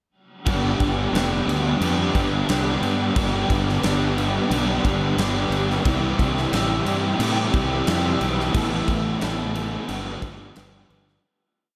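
Set in a straight 4/4 at 89 BPM, this short, blissful and hazy shoegaze and dream pop rock piece in G mixolydian pairs a big acoustic rock drum kit (punchy kick, medium-tuned snare and crash cymbal in a bright stone room) with a growly, fuzz-laden fingered electric bass driving eighth notes and two up-front overdriven electric guitars strumming chords with whammy-bar dips, the biting one trailed by reverse reverb and the crunchy one thickened by analog chorus, as the harmony moves from G to C, Asus2 and G7 inside a dreamy mix soaked in huge ambient reverb that fades out from 8.5 to 11.2 seconds.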